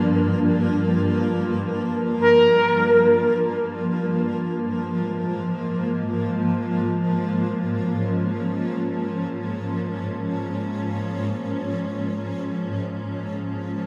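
In free time, this unsettling, ominous ambient fragment, cut from a longer piece and tuned to A4 = 442 Hz, rests on a cloudy, blurred granular pad of sustained chords that runs the full 13.9 seconds, shifting from Gm7 to C#6 at 4.1 seconds and fading out. From 2.2 to 3.5 seconds a mellow, horn-like synth lead holds a single round, warbling Bb4 with vibrato and a filter sweep, colored by lush chorus, vintage 12-bit sampler grit and analog delay. A wet spring reverb and an echo-heavy mix wrap both parts in a haze.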